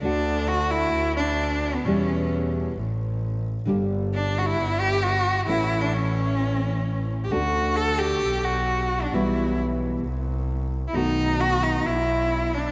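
Sultry and melancholic, this rubato tango in D major at 132 BPM features a rich, bowed cello soloing from 0.0 to 12.7 seconds with expressive vibrato, soft attacks and portamento, over a dark, thumb-plucked nylon-string guitar with analog chorus that drops out at 11.9 seconds and a clear, biting bowed double bass with a nasal, earthy, airy tone, all in a dreamy mix soaked in a 3.2-second plate reverb.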